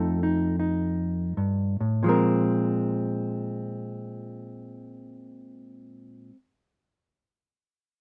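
A dark, clean hollow-body electric guitar plays alone up front, fingered and unhurried, easing back over its opening F9 chord before settling onto a Bbsus2 at 2.0 seconds. This short solo jazz passage feels playful and sophisticated, and the guitar rings out until 6.4 seconds. Close, detailed microphones and little room sound keep every note intimate.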